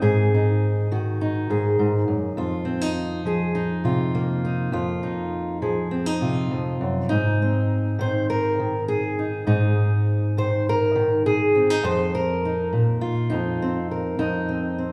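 A fingerpicked steel-string acoustic guitar, dark and woody with the worn tone of old strings, plays solo and up front in this melancholic, haunting folk excerpt, moving from Ab to F7sus4 before a second section at 7.1 seconds shifts to Abadd9, the whole passage bathed in the long, wet reverb of a recital hall.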